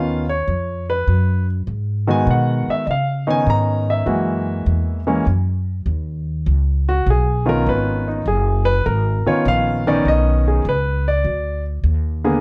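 Jazz at 100 BPM with a relaxed, swinging 4/4 feel, this short cut from a longer piece features a natural-toned baby grand piano carrying the melody with short sustain, over a woody, thumpy pizzicato upright bass, both up front in a dark production with light reverb, moving through Db9, Abm7, Dbsus2 and Gb9 before the chords drop out at 11.2 seconds.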